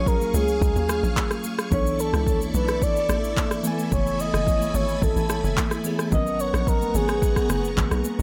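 Soulful and deep, this short amapiano passage moves at 109 BPM in a straight 4/4 over minor eleventh chords, Ebm11 to Bm11, Gbm11 and Abm11. A breathy, flute-like synth lead with chorus, vibrato and tape echo carries the melody, while a bell-like tine electric piano adds clean accompaniment and a vintage string machine of violins holds shimmering, slow-attack chords. Underneath, a tight, punchy log drum bass and an up-front electronic afro-pop kit with a deep kick, handclaps, rim click and shaker drive the groove, joined by very quiet, high-tuned congas in a dry, echo-heavy mix.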